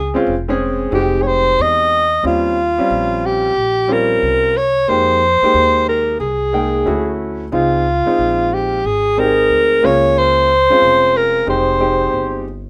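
A breathy, whispered alto saxophone sits up front with light vibrato and a soft attack, taking a jazz-style solo over the opening 2.2 seconds and carrying the melody through this mellow, nocturnal jazz-hop fragment in F minor at 91 BPM with a swung 16th feel, tuned to A4 = 436 Hz, while a woody pizzicato upright bass and an intimate concert grand piano, its action noise audible, move through lush chords such as Fm9, Eb13 and Dmaj7 in a rough home demo mix with moderate studio reverb.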